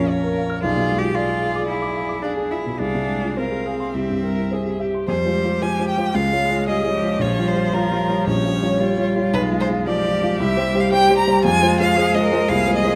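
A quick classical-period movement for piano quartet, this stormy, urgent passage is cut from a longer piece and moves with a flexible, rubato feel in 4/4. A focused, up-front solo violin carries the melody with vibrato, its rich, bowed tone sitting high in the texture. A dark, mellow grand piano, natural in colour with a short sustain, supplies the accompaniment from deep bass up into its upper register and stands at the front of the mix. The cello, close and even, adds a smooth, bowed second line with vibrato, while the viola's rich, vibrato-laden accompaniment sits distant in the background. A wet recital hall reverb surrounds the close, detailed microphones, and at 5.1 s the music moves into a new section built on restless harmonies that settle back onto the home minor chord at 11.5 s.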